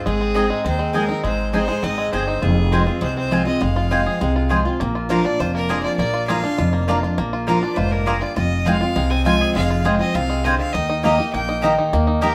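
A twangy, fingerpicked banjo and a clear, earthy bowed fiddle with light vibrato carry the melody over a full-bodied, up-front picked dreadnought guitar, joined at 0.1 s by a growly pizzicato upright bass and at 0.3 s by woody double-string mandolin stabs, in this rustic, haunting bluegrass excerpt at a brisk 202 BPM in straight 4/4, played live by the band in one room with wet studio reverb as the chords move from Ab and Fm to a new section of Bb, Fm and Eb at 4.8 s.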